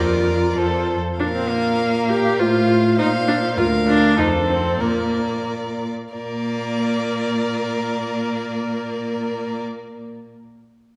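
A quick, spirited and cheerful classical-period string quartet movement in Bb major and 2/4, moving at 87-102 BPM with a straight feel, in a passage cut from a longer piece. A rich first violin sings the bowed melody with vibrato over a focused second violin line, a warm viola accompaniment and a clear cello bass, with the viola sitting loudest among the parts. The tempo slows between 3.0 and 6.1 seconds before a new section begins, and a wet concert hall reverb places the quartet further back in the room.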